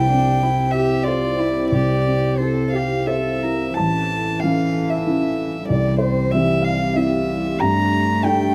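A mellow, felt-muted upright piano sits up front in this fragile, reflective neoclassical piece in a rubato 3/4, carrying the accompaniment while a close, airy-bowed violin sings the melody through plate reverb, a rich, distant cello adds a second line, and a deep, detuned analog pad with chorus holds sustained chords in the background as the harmony shifts from C to A at 3.8 s.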